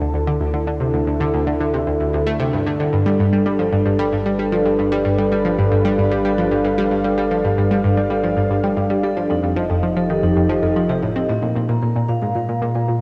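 A bright, nasal, detuned analog pluck riff with chorus, phaser and delay sits up front in this mysterious, hypnotic stretch of sequencer-driven ambient space music at 113 BPM, over a warbling, resonant sawtooth pad holding sustained chords, a deep, round sine sub bass in the background, and a metallic, ringing vibraphone whose delayed arpeggios enter at 3.1 s, with the pad, pluck and vibraphone carrying a vintage cassette-tape grain inside a lush hall reverb.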